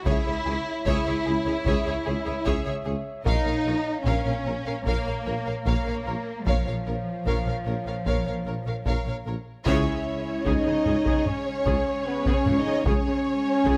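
This cut from a longer epic orchestral film score opens on heavy, compressed and saturated taiko drums over a slow 75 BPM pulse in C# minor, with clear, intense double basses, rich cellos and a mellow background tuba anchoring the low end while mellow, vintage-toned French horns hold sustained chords. Lush, vibrato-laden violins carry the expressive melody with a second line behind it, and distant, even violas fill the middle, giving the passage a heroic yet dark mood as the harmony shifts to A#m at 3.3 seconds. At 9.7 seconds the music returns to C#m with a band accent, where very quiet round timpani, a faint bright trombone section and a soft background string section join the close, detailed sound under light reverb.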